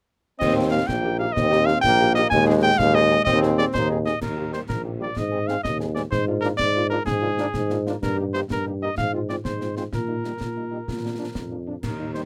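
A festive, spirited military-style march for wind band in Eb major at 126 BPM in a straight 6/8, with a warm cornet carrying the melody up front with light vibrato while a tuba with vibrato, up front yet distant and roomy, holds the bass, a warm trombone section sustains chords and a clear, punchy French horn section enters at 0.6 seconds in the background, all over concert snare, dark clash cymbals and concert bass drum recorded close and dry, in a short cut from a longer piece that moves from Eb through Ab and Bb7 to a closing Bb.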